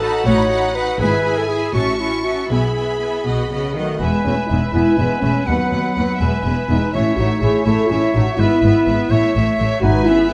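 Dark French horns stand out in this spirited excerpt from a quick classical-period movement for symphony orchestra, entering at 3.8 seconds with sustained, roomy chords. The piece moves at 82 beats per minute in a straight 6/8 in E major, opening over a chord progression that settles onto B before turning to E as a new section begins at 4.0 seconds. From the start, lush violins carry the melody high above a second violin line, with a clear viola section in accompaniment, while a warm solo clarinet adds another line. Rich, bowed cellos and smooth, even double basses anchor the bass with vibrato. When the second section arrives, an airy silver flute and a distant oboe join with further lines, giving the lively texture extra color. Close, detailed microphones and light reverb keep the ensemble focused and vivid.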